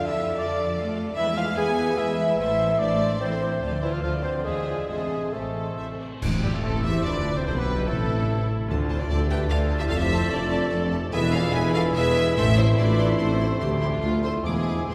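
Restless and stormy, this fast romantic orchestral passage in A minor at 146 BPM in 3/4 surges with rubato as a vibrato-rich chamber violin section carries the melody over an airy flute ensemble, a lush close studio violin section, a smooth-topped oboe and, from 6.4 s, a background clarinet, while bassoon, a very quiet viola section, soft French horn chords and ringing thumb-plucked harp support deep cello and double bass sections joined by a mellow tuba, with bright cymbals and bass drum crashing in at 3.6 s and hard-mallet timpani striking at 6.2 s, all bathed in a wet church reverb.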